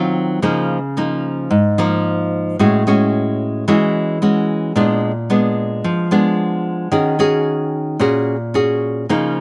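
Romantic and breezy, this short bossa nova fragment at 111 BPM in a straight 4/4 features a solo fingerpicked nylon-string guitar, woody and classical in tone with the warm character of old strings, sitting up front in a dry outdoor sound as it moves through Db69, A6, Bb7b9 and Ebm7 across its 9.4 seconds.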